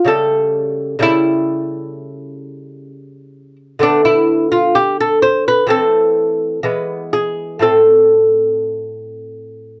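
A delicate, fingerpicked lute with gut and double strings, some doubled at the octave, plays a solemn, introspective baroque-style dance in a rubato feel, moving from A7/C# through Dm13 at 3.8 s to a close on Am at 7.6 s, heard up front in a dry, close 1970s-style studio sound touched by moderate reverb in this brief passage cut from a longer classical piece.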